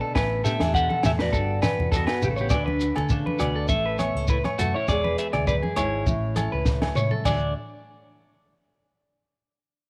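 A twangy, up-front clean electric guitar with phaser carries a joyful, sunny highlife melody over a bright, fingerpicked nylon-string guitar in the background and a second clean electric guitar playing arpeggios through slapback echo. At 0.2 seconds a round, dark hollow-body bass joins, along with a compact cocktail drum kit with a punchy kick and high-tuned snare, ringing agogo bells and grainy shekere, and soft-handed congas enter at 0.6 seconds, all in a small room with light reverb. A drum fill at 6.7 seconds then leads into the final section of this excerpt cut from a longer piece.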